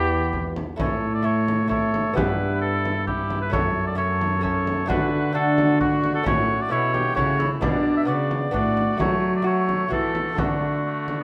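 Heard in a moderate stone room with a reverb tail of about 1.2 s, this short cut from a longer piece is a renaissance-style consort dance in triple metre, with a rustic yet courtly mood. A warm, vintage-toned oboe carries the melody up front, while a cor anglais with vibrato sings a present second line beneath it. A bright lute with double strings is fingerpicked as a delicate accompaniment, and a single bowed cello with a dark gut-string tone holds the bass. A deep frame drum, struck with hard hands, joins at 0.3 s. The harmony moves through chords such as Em, A, F#m, D and Bm.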